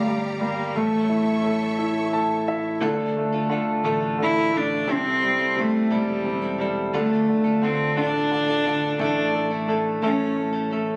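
This six-eight pop ballad excerpt feels aching and dramatic, carried by a solo bowed cello up front with a dark, reedy, gut-string tone in period style and a smooth top. A clear, polished concert grand piano accompanies throughout, intimate and present with deep bass, long sustain and audible action noise, and it plays a short fill just before the 2.8-second mark. A lush studio string section holds focused, vibrato-rich chords in the opening bars, then gives way at 2.8 seconds to a clean electric guitar, recorded direct and compressed with a scooped, picked sound, playing arpeggios. Underneath, a fingered electric bass sounds punchy and amped. The harmony moves through minor chords and settles on a suspended chord before resolving, and the whole is heard in a moderate recital-hall reverb, captured on a phone in the room with a club-like ambience.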